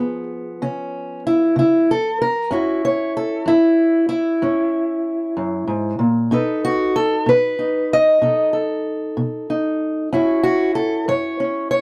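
A fingerpicked steel-string parlour acoustic guitar, boxy and up front, plays alone in this rollicking, swaggering acoustic country blues excerpt at 63 BPM in 12/8 with a straight feel, moving from C#7 to F#7, B7 and back to F#7, with a solo from 2.5 seconds, caught in a dry, close 1970s-style studio sound with light reverb.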